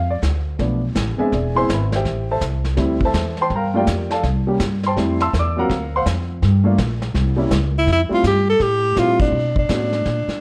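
Piano accompaniment and a woody, up-front pizzicato upright bass open this playful, relaxed excerpt of small-group swing and bop in F major at 165 BPM, joined at 0.2 seconds by a dark, smooth brush kit with a rolled-off top and a tight kick, before a warm, close-miked tenor saxophone with vibrato and scooped notes takes the melody at 7.8 seconds, shortly ahead of a band accent at 9.1 seconds, the whole mix set in a moderate large-studio reverb and colored by worn, warbling cassette-tape pitch drift.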